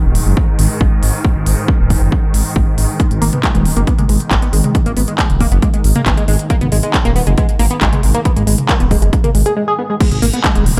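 Driving peak-time techno with an intense edge, cut from a longer piece, built on an up-front, overdriven electronic kick and a deep, rumbling detuned saw bass that pumps under sidechain compression alongside a swarming, granular drone bathed in lush chorus and its own reverb. An overdriven techno kit adds smooth hi-hats, handclaps, toms and a crash cymbal, and at 3.0 seconds a tight, nasal sequenced synth riff enters with a filter pluck, tube saturation and tape echo. A brief break arrives at 9.6 seconds, and the whole mix sits in a light room reverb.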